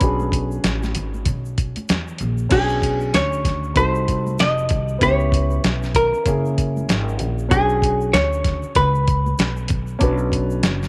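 From the start, a smoky, nocturnal jazz-hop groove at 96 BPM in B dorian sets a clean, hollow-body archtop guitar melody up front over a dark, mellow upright piano, a woody pizzicato upright bass with transformer saturation, a gritty, tape-toned sampler-style drum kit with a thumpy kick, and bright, dry tube shaker and congas in the background, all swung on the 16ths and bathed in moderate spring reverb as the harmony moves from Bm69 through Cdim7, C#m7b5 and F#7 before returning to Bm69 at 7.5 seconds.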